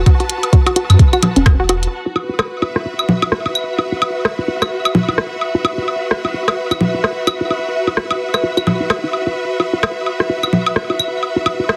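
Sparse and hypnotic, this cut from a longer minimal techno piece in F# minor moves at 129 BPM with a 59% swing on the sixteenths, opening on an F#sus4 as a hollow, bouncy square pluck riff, coloured by chorus, delay and vintage 12-bit sampler grit, plays alongside a clear, bowed studio string section with vibrato, both pumping against the sidechain. A deep, punchy sub bass with a pitch-drop attack and a soft, tape-warm electronic kick drop out by 1.9 seconds, while clicky, low-pass-filtered hats and rim clicks carry on with overdriven, delayed woodblock, claves and congas up front. The whole mix has a heavily compressed radio sound in a small room.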